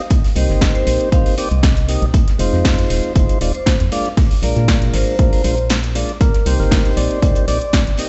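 A swung 118 BPM deep house groove in C minor rides on a punchy, up-front electronic kick, an overdriven kit with metallic hats, and a very quiet, muffled soul kit underneath, while a hollow, percussive FM bass pumps with sidechain compression and a mellow tonewheel organ with key click and slow rotary speaker plays stabs through Cm7, Fm7 and Bb7. A ringing, bright vibraphone with digital delay carries the melody in the background until 5.5 seconds, and after a short break a clean tine electric piano takes over at 6.2 seconds. This smooth, warm excerpt is cut from a longer piece and sounds as if played on a big sound system in a bare stone room, with the top end dulled above 8.0 kHz.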